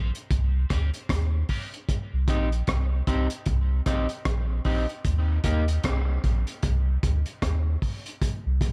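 A twangy, slightly broken-up electric guitar with lush chorus, high-pass filtering and dub echo opens this spacious, laid-back dub reggae excerpt in Eb major alongside a round, deep sub bass, joined at 0.1 s by a gritty, saturated breakbeat kit of tight kick, hi-hat and rim click swung on the 16ths at 76 BPM. The harmony moves through Eb, Cm, Eb5 and Bbsus2, and the guitar drops out at 5.6 s while bass and drums carry on in a small, lightly reverberant room.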